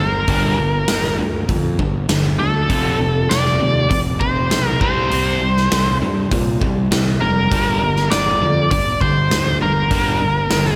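A big arena sound in a concert hall's reverb frames this menacing, aggressive hard rock passage in G minor at 100 BPM, cut from a longer piece and moving from Gm through F and C5 back to Gm. An overdriven lead guitar with a biting, cutting edge and digital delay carries the melody up front, while a very quiet overdriven electric guitar and a hollow-body semi-hollow guitar in the background play the riff beneath it. A growly, punchy fuzz bass anchors the low end, and a big acoustic rock kit with a medium-tuned snare and punchy kick comes in at 0.3 seconds.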